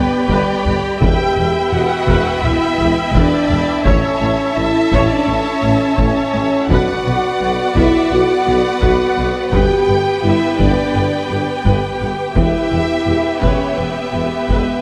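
A straight 4/4 pulse at 85 BPM drives this dark, dramatic cinematic score, with a heavy-sticked taiko ensemble entering at 0.3 s beneath a progression moving from G through Em, A and Bm. Lush, focused violins carry the melody over a second, softly attacked violin line, expressive viola accompaniment with portamento, and a close string section holding sustained chords, while a tight, mellow French horn section adds its own sustained chords. Below, the bass is built from a distant, roomy tuba, a very quiet, rich cello section and a double bass section sitting in the background, all bathed in a wet concert hall reverb.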